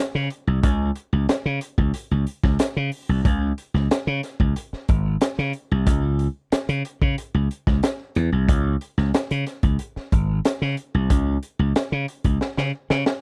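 A bright, growly slap bass opens this strutting funk groove and is joined almost at once by a gritty, dark breakbeat kit with a punchy kick, high-tuned snare and hi-hat, both parts sitting up front in a dry, close 1970s-style studio sound until a drum fill at 12.4 seconds.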